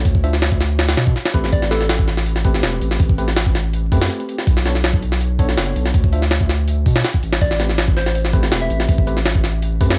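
This dark, nostalgic drum and bass excerpt in A dorian runs at 163 BPM in a straight 4/4, opening on worn, slightly out-of-tune tine electric piano stabs. They are dressed in vintage 12-bit sampler grit and dub echo, over a deep, thick, saturated sine sub bass with a fast attack and long sustain. A sampler-style jungle kit enters at 0.1 seconds, sitting up front. Its compressed, pitched-up hi-hat, thumpy kick and high-tuned snare carry a gritty, tape-warm character. A round, gentle FM synth lead with a keys-like, sub-octave tone, chorus and dub echo appears in the background for brief melodic phrases at 1.5 and 7.4 seconds. Harmonies move from D7(no3) through Am9 and Bm9 to a short break before returning to Am9. The recording is dry, with a prominent layer of vinyl crackle.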